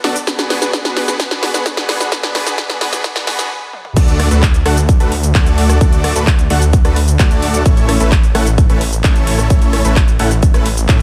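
Uplifting and triumphant, this festival progressive house passage at 130 BPM opens with a huge, bright supersaw riff carrying sidechain pumping and dub echo over a big-room kit of punchy snare, metallic hats, handclaps, rim click, shaker, toms and crash, joined by a punchy, up-front electronic kick, as the build-up runs through a drum fill to a brief stop at 3.5 seconds before the drop at 4.0 seconds brings in a thick, menacing detuned saw bass that also pumps, while the harmony moves from Bm6 to D and then A under light reverb.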